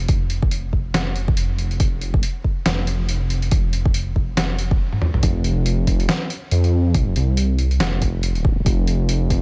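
Swung half-time at 140 BPM, this dark, meditative deep dubstep excerpt builds for 5.2 seconds before a drum fill tips it into the drop, with a rumbling, beating detuned saw bass sitting up front alongside a layered electronic kick and a gritty, pitched-down sampler-style kit of hi-hat, snare and toms, both re-recorded in a small room with a tape-warm tone and little reverb.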